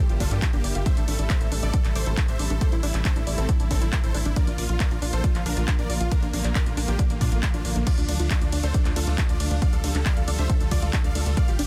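Uplifting trance at 137 BPM in D minor, driving and euphoric, where a huge, lush detuned supersaw carries the melody with dub echo over a Gm7, Am7, Bb, Dm progression, backed by bowed studio strings holding smooth sustained chords, a mellow phased and chorused synth arpeggio with digital delay, a dark, plucky sawtooth sequencer bass, a punchy up-front electronic kick, and an analog drum machine's handclaps, hi-hats, crash and ride, with sidechain pumping on the supersaw, strings, arpeggio, bass, and the drum machine's hats and cymbals in a dry, dense, heavily limited mix.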